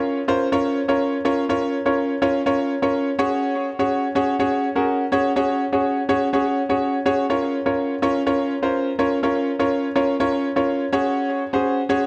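A clear, up-front concert grand piano plays alone through this carefree, upbeat pop excerpt at 124 BPM, its natural tone with deep bass and short sustain carried on tape echo and a wet spring reverb as the chords move from Bbm to Gbsus2 and back, cut from a longer piece.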